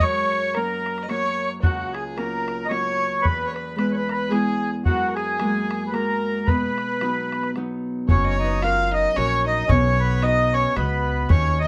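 Close, detailed microphones and light reverb frame this cheerful, lively Celtic folk waltz at 112 BPM in 3/4 with a swung lilt, where a reedy, mellow accordion carries the melody up front over a smooth, distant fiddle second line, ringing fingerpicked Celtic harp and a boomy bodhran, until the key moves from B major to F# major at 8.1 s and brings in a woody, thumpy pizzicato upright bass along with a smooth-topped flugelhorn second line in the background, in a clip cut from a longer piece.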